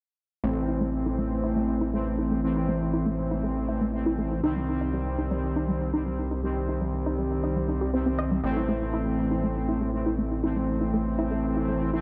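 A moderate scoring-stage reverb frames this dark, hypnotic techno excerpt at 120 BPM in straight 4/4, moving from A minor to C minor at 4.4 seconds and back to A minor at 8.4 seconds. Up front, a gritty, saturated bass built from sawtooth, sync and ring-modulated tones holds the low end while fat, brassy analog synth stabs with chorus, vibrato and digital delay ride above it. In the background, a tight, detuned sequenced arpeggio with a plucky filter, phaser and delay runs through a filter sweep from 0.4 to 12.0 seconds.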